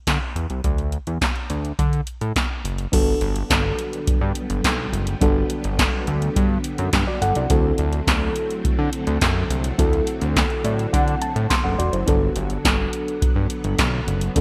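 A fat, detuned sawtooth bass with a plucky filter sits up front beside a dry, punchy electro drum machine with a deep kick, handclaps, gated reverb and metallic hats in this slick, funky early-eighties boogie funk excerpt at 105 BPM, where a soft, round FM electric piano with chorus and a lush string machine in the background join at 2.9 seconds over Gmaj7 and D7 chords, the piano adding a fill at 10.4 seconds within a bright digital ambience.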